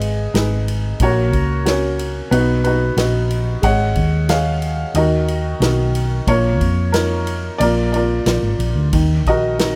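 Melancholic and reflective, this short cut from a longer acoustic folk-pop ballad in Eb minor moves at an unhurried 91 BPM in a straight 4/4, passing through chords such as Abm, Absus4 and Bbsus4 before settling back on Ebm. A felt-muted upright piano carries the melody up front, its soft, intimate tone marked by audible action noise, while a hollow-body short-scale electric bass, fingered and amped, adds a dark, round low end beside it. A natural country drum kit with a punchy kick, medium-tuned snare and ride cymbal sits further back in a small room, and light reverb gives the whole a gentle sense of space.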